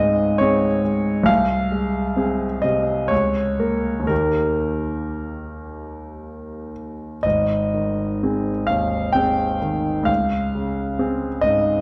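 In an unhurried triple metre, this romantic nocturne for solo piano drifts between 56 and 70 BPM with a free, breathing rubato. Set in Ab major and tuned slightly low to A4 = 436 Hz, the mood is serene and nostalgic, unfolding over a short excerpt of 11.8 seconds cut from a longer piece. The grand piano carries everything alone, spanning Ab1 to G5 with a clear, polished, intimate tone, long sustain, and audible action noise that places it up front and present. The harmony opens on Dbmaj7, moves through Ab/C, Bbm/Db and Eb, settles on Ab at 7.2 seconds, and returns to Dbmaj7 at 10.1 seconds. A wet recital hall reverb of about 1.5 seconds surrounds the instrument, and the overall production leans dark and warm.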